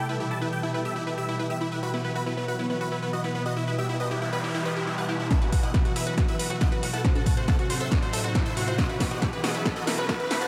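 Uplifting trance at 138 BPM in straight 4/4, tuned slightly flat to A4 = 437 Hz, this bittersweet, emotional passage is cut from a longer piece and moves through Em, Bsus4 and F#dim. A huge, euphoric supersaw lead of detuned unison sawtooths carries the melody from the start. Its bright, compressed tone pumps with the sidechain and is trailed by delay, over a silky, evolving analog string pad with ensemble chorus and vibrato holding sustained chords. A round, warbling vintage pluck spins arpeggios through chorus and tape echo, also pumping with the sidechain. An electronic noise sweep and riser emerges in the background at 3.9 s. At 5.3 s the build-up begins as a tape-warm, up-front punchy kick and an analog drum machine of congas, hi-hat and snare arrive with a drum fill and filter sweep, joined by a tight, saturated sequencer bass that is barely audible. The dreamy mix is soaked in a 7.7-second ambient reverb and high-pass filtered.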